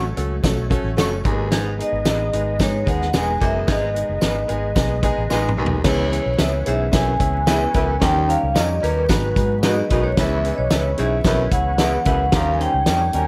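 Uptempo 1960s-style soul with an urgent, passionate drive, built on a punchy, up-front drum kit with a fat snare, a dark, foam-muted electric bass, a brilliant grand piano, a gritty overdriven organ through a slow rotary speaker, and a jingly tambourine in the background. A clear baritone saxophone riff with scooped notes enters at 1.2 seconds, while a ringing, metallic vibraphone carries the melody and a twangy guitar through a small old amp adds stabs washed in lush chorus. A drum fill at 5.3 seconds leads into a new section over minor-seventh and dominant-seventh chords, all under light reverb and vinyl crackle in this cut from a longer piece.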